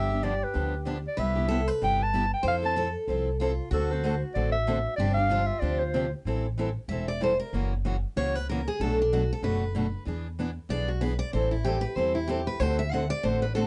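This is a fiery, swinging slice of acoustic string swing in the jazz manouche style, cut from a longer piece. A clarinet with vibrato carries the melody up front, its jazz-inflected lines sitting in a warm, present tone until it drops out at 6.1 seconds. Two picked steel-string acoustic guitars ring out bright on fresh strings with audible finger squeak: one plays a second line and then takes a solo from 6.3 seconds, while the other holds down the accompaniment throughout. An upright bass, plucked pizzicato, gives a woody, thumpy, dark low end that sits up front with the guitars. The harmony moves from major-seventh and dominant colours in the opening stretch into a minor-flavoured passage for the guitar solo, and the whole recording has a dusky production with a light touch of reverb.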